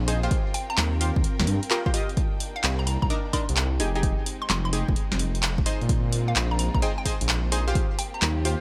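A dark, detuned sawtooth bass and a clear studio violin section open this moody, late-night UK garage cut together, the bass deep, rumbling and saturated up front while the bowed violins hold sustained chords with vibrato in the background, both pumping under sidechain compression. Almost at once a punchy analog drum machine sets up a two-step groove at 129 BPM in 4/4, its handclaps, hi-hat and snare swung on the sixteenths and caught in a short room, with an electronic kick joining at 0.3 s. Bright sawtooth chord stabs with a filter sweep, chorus and digital delay outline a progression moving from Eb6 through Cm7, Fm9 and Bb9sus4 before returning to Eb6. From 0.5 s a hollow, bouncy square-wave pluck carries a high melody, its detuned tone edged with a noise layer and sent through chorus and delay. The production is crisp and 1980s-flavoured, with light reverb and the drums and bass kept close, and the passage is cut from a longer piece.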